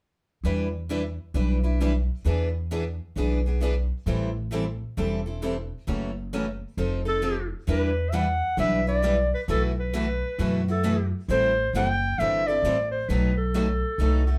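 Two picked steel-string acoustic guitars and a plucked upright bass open this brisk jazz manouche cut in E minor at 133 BPM, swinging and virtuosic, the guitars bright with fresh strings, one carrying finger squeak and the other a boxy parlour tone, while the woody, thumpy gut-string bass sits up front. At 7.1 seconds a clarinet enters with a solo melody, played in jazz style with light vibrato and a slapback echo, sitting forward over a chord progression that moves through Em7, Am7 and B7. The whole band is heard from further back in a studio room with a short, wet reverb.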